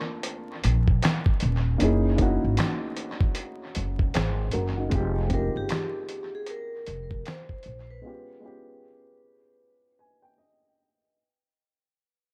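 Nostalgic and hazy, this lo-fi hip hop excerpt sits on a dark, mellow upright piano with audible action noise, joined by a gritty, compressed sampler-style kit of thumpy kick, fat snare, hi-hat and handclaps under dub echo, and a woody pizzicato upright bass up front. At 5.3 seconds a faint, metallic vibraphone with hard mallets and slow motor vibrato brings in a ringing melody, also wrapped in dub echo. The drums and bass drop out for a break at 8.0 seconds, the piano adds a fill from 9.6 seconds, and the whole echo-heavy, dry mix fades out under vinyl crackle.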